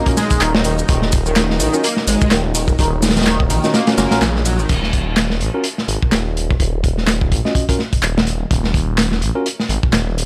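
Swaggering and energetic, this breakbeat cut from a longer piece struts on a swung 4/4 groove built from a crunchy, saturated breakbeat kit with dark cymbals and a tight kick, sitting up front and joined by an overdriven analog drum machine adding handclaps, ride and shaker. A thick, swirling detuned saw bass with a phaser anchors the low end from 0.3 seconds, while a tine electric piano played through a combo amp fires clean stabs with tape echo. The opening drop, over a single Ebm7 chord, features a screaming, guitar-like synth lead riff drenched in distortion, phaser, chorus and tape echo, backed by a lush, airy unison pad that sits in the background with sidechain pumping. A band accent lands at 4.2 seconds, and at 4.7 seconds the lead and pad drop out, leaving the drums, bass and electric piano to drive the second section. The sound is dry and gritty, with a hardware-recorded bite.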